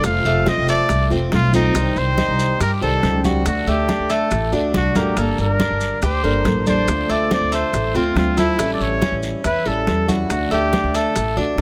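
Nostalgic and sultry, this Cuban son and guajira excerpt in G minor moves at 140 BPM, with a clear, punchy trumpet singing the melody up front with vibrato and scooped notes, entering at 0.1 s. Beneath it, a woody pizzicato upright bass sits forward, a bright, metallic Cuban tres picks arpeggios on its doubled strings, and a dark, boxy fingerpicked steel-string guitar adds accompaniment with audible finger squeak. Hard-hand congas with a thin skin, very quiet round bongos, a raspy saturated guiro and grainy maracas fill the background under light reverb, and a drum fill at 4.7 s leads into the repeat of the section.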